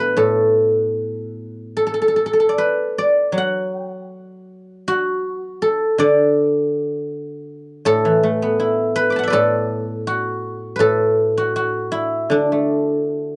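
A solo guzheng, silvery and ringing under fingerpicks, plays up front from A2 to D6 in this flowing, elegant 13.4-second fragment of Chinese traditional music, moving freely at 79 BPM in 4/4 with uneven, rubato beats, captured dry and close in a small room with a 1970s studio character.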